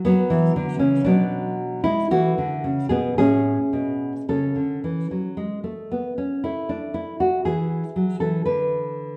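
A solo nylon-string guitar sits up front with a deep, thumb-plucked classical tone and audible finger squeak, playing a radiant, flowing baroque-style dance in 3/4 with a freely bending rubato pulse. Its opening phrase moves through F#5, Bm, E5 and A, then returns at 6.4 seconds on A5 before reaching a chordless moment at 8.5 seconds. The short passage, cut from a longer piece, sounds like a live performance in a large studio bathed in lush reverb.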